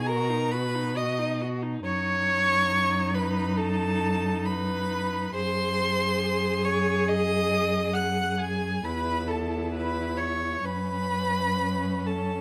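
A light reverb surrounds this brief excerpt, cut from a longer piece: a slow, romantic movement for string quartet at 68 BPM in 4/4, its pulse moving with rubato and a melancholic, solemn mood. The first violin carries the melody high in its range, from G#5 to F#6, its warm tone shaped with vibrato, portamento and expressive bowing. Beneath it, the second violin plays a second line from G#4 to F#5 with a darker, woody character and vibrato. The viola supplies accompaniment between C#4 and G#4, and the cello, dark and up front with a smooth top, anchors the bass from E2 to B2, both bowed with vibrato, portamento and expressive phrasing. All four players sound together throughout the 12.4 seconds as the harmony moves from B through D#dim/F#, G#7/F# and Aadd9/E before settling on F#madd11 at 10.7 seconds.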